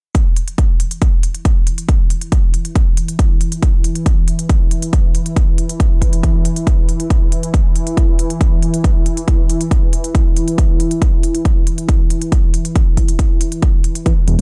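A heavy, up-front electronic kick anchors this hypnotic, relentless stretch of driving peak-time techno in a straight four, carrying a touch of studio reverb from the first moment to near the close. Smooth, layered electronic hi-hats sit well back in the mix beside it, while a deep, moody pad drones from 0.8 s, its detuned unison sawtooth body and sub octave given chorus and its own reverb, with sidechain pumping making it breathe against the beat. The overall sound is dry and close, cut from a longer piece as a single continuous section. Only at 14.1 s does a warbly, dusty pluck arrive, a lo-fi, wave-folded tone with chorus, overdrive, a filter sweep and sidechain pumping. A thick, menacing detuned saw bass lands just after at 14.3 s, saturated and beating, pushed up front with the same pumping.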